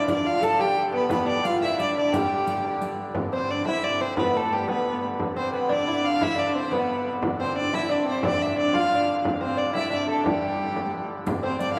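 A medieval dance in G mixolydian, this excerpt from a longer piece moves at 118 BPM in a straight 6/8, with an ancient, rustic mood. A single bowed fiddle carries the melody up front, its focused tone touched with light vibrato, while a fingerpicked lute and a fretted viola da gamba weave second lines beneath it. The lute's double gut strings sound delicate, and the gamba brings a biting, reedy gut-string voice that rings in period style. A chamber organ's soft oboe stop holds a low drone in the background, with a touch of chiff in its voicing. A vintage, band-limited frame drum keeps the pulse from 0.1 s nearly to the end, and a riq adds bright, close and dry jingles at the opening before dropping out at 3.0 s, returning only at 11.3 s. A wet church reverb with a 3.7-second tail surrounds the ensemble, lending the performance a spacious, resonant air.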